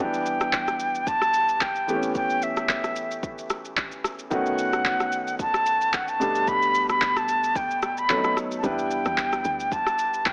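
A pure, expressive concert flute with vibrato sings the melody over an intimate grand piano, whose action noise and long sustain come through, and is joined almost at once by an up-front, tape-warm deep house kit of deep kick, handclaps, rim click and shaker, before a round, dark log drum bass arrives at 8.6 s in this soulful, late-night amapiano excerpt, all heard through an AM radio sound with light reverb and small room ambience.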